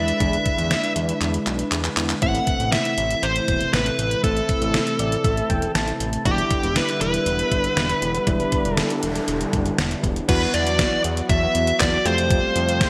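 Synth-pop in E minor at 119 BPM, this melancholic yet driving cut from a longer piece sets a dark, overdriven lead guitar melody with delay up front over a detuned 8-bit drum machine with a thumpy kick and fat snare, a thick sawtooth analog bass, and soft, round electric-piano-like synth keys and a slow-attack analog pad, both with chorus, sitting in the background. The drums add a fill at 1.2 seconds, the keys take a fill at 4.7 seconds, and a faint noise sweep enters at 8.8 seconds before the harmony shifts at 10.3 seconds. The bright 1980s-style digital production is bathed in a lush hall reverb.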